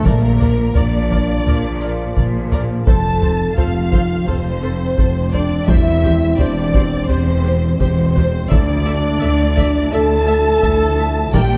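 A dark, warm production fills a scoring stage whose moderate reverb gives the orchestra a sense of space, with nothing above 7.6 kHz. This cinematic, epic film-score excerpt moves at 85 BPM in a straight 4/4 in D minor, its mood relentless and heroic, as the harmony passes from Bb to F, then C/E at 5.7 seconds, and settles on Dmadd9. A heavy-sticked taiko ensemble, the most prominent part, drives beneath a bowed foundation of rich, even double basses and expressive cellos. Dark, roomy French horns hold sustained chords at the same level as the low strings, while a tight trombone section sustains its own chords further back. The violins carry the melody with focused vibrato and a smooth top, a second, soft-attacked violin line and a distant viola accompaniment sitting behind them.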